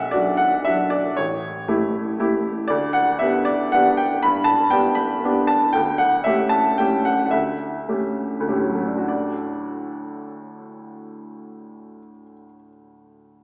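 A bright, brilliant baby grand piano with short sustain plays this sparkling, elegant classical waltz alone, in 3/4 at a rubato 94-125 BPM in D major, moving through Bm, A7 and G/D, slowing from 5.0 to 9.1 seconds, then settling on D in a new section, all cut from a longer piece and heard from further back in a wet recital hall with an AM-radio colour.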